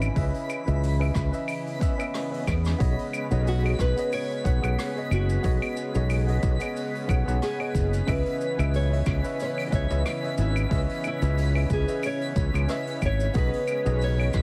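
A lightly swung sixteenth-note groove in 4/4 carries this relaxed, blissful sunset chillout excerpt. A vintage brush drum kit with a rolled-off top ticks through claves, hi-hat, rim click and shaker, while a deep, overdriven electronic kick anchors the pulse and a growly, up-front fingered electric bass sits prominently in the mix. A worn, slightly out-of-tune tine electric piano comps through tape echo and shimmer reverb, over a thick, detuned unison pad whose chorused sawtooth and square-wave chords rise slowly and linger. High above, a twinkling granular texture adds an octave-up sparkle, and a faint electronic swell arrives at 1.7 seconds, with a short drum fill at 2.5 seconds leading into the main passage. From 3.5 seconds, a small, fingerpicked nylon-string guitar takes the melody, its notes trailing echo and shimmer, as the harmony alternates between C#m9 and B69. The whole track has a heavily compressed, radio-like sound with a light small-room ambience.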